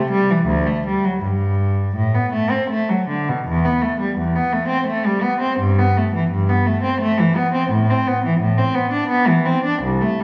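This is a classical, baroque-style suite movement for unaccompanied cello, and its mood is serene and flowing. A single bowed cello carries the whole piece, played in period style with a gut-string tone that sounds nasal and reedy. The triple metre moves with a gentle rubato, and the phrasing feels unhurried throughout. At 3.4 seconds the opening idea begins again and continues until the fragment breaks off at 10.2 seconds, cut from a longer performance. The instrument sits up front in a church or concert hall, whose lush reverb gives the resonant space a soft halo.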